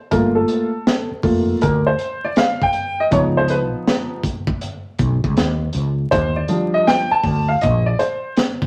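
A swung 80 BPM groove in 4/4 rides on a crunchy breakbeat kit, with a tight kick, a high-tuned snare and hi-hat, all gritty and saturated with a rolled-off top, setting a cool, nocturnal jazz-hop mood in this short cut from a longer piece. A woody, slightly detuned vintage upright piano plays a solo over Gm9, C#9 and Ebmaj7 with long sustain, tuned to A4 = 442 Hz. A growly, round fretless electric bass sits underneath until 7.9 seconds, all set in a moderate studio reverb with a bed of vinyl crackle.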